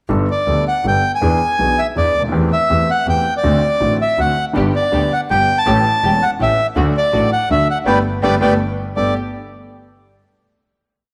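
Tango in waltz time, this short, passionate and nostalgic piece in G major moves at 162 BPM in 3/4 with a rubato feel. It opens with an intimate concert grand piano, whose action noise is audible and whose bass runs deep, and a bowed double bass with light vibrato, both accenting beat one; a reedy, dark bandoneon enters at 0.3 seconds up front with smooth, motif-based period phrases. Soft sul tasto string stabs float in the background from 4.5 seconds, the band accents together at 7.9 seconds before a final chord at 9.0 seconds, and a wet echo-chamber reverb with a 1.8-second decay surrounds the whole piece.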